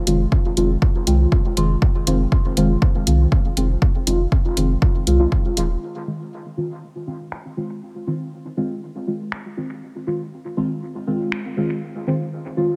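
Lightly reverberant and hazy, this deep dub techno fragment is built on a dark, soft chord stab in Fm7, thickened by chorus and phaser, pumping against the sidechain and trailing dub echo. A round sine sub bass and a punchy, tape-colored electronic kick sit up front until the kick drops out at 5.4 seconds and the bass follows at 5.8 seconds. From there, finger snaps and muffled hi-hats from a small-room analog drum machine carry on under a filter sweep beside the lingering stabs.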